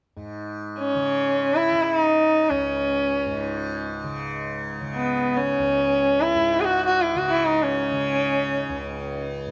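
In free time, this short, introspective and solemn passage of Indian classical music opens at 0.2 seconds with a softly plucked tanpura drone, bright and buzzing with a shimmering edge. A single bowed sarangi enters at 0.8 seconds and sits up front with a warm, smooth, even tone, gliding between notes with portamento and light vibrato while its sympathetic strings ring beneath it. Close, detailed microphones and light reverb bring out every nuance of this brief fragment of a longer piece.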